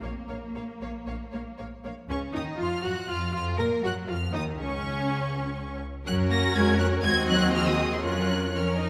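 A rich, focused violin section carries the melody high above the ensemble in this dramatic, restless classical-period movement for string orchestra, a brief cut from a longer piece in a quick 4/4. A second violin line glows warmly beneath it, while intense violas, expressively soft-attacked cellos and a smooth, even double bass section fill out the lush, bowed texture. The whole ensemble plays throughout the 8.9 seconds, bathed in a wet concert hall reverb, with the harmony moving from a minor opening through brighter major and darker diminished chords before settling back on its home chord over the bass.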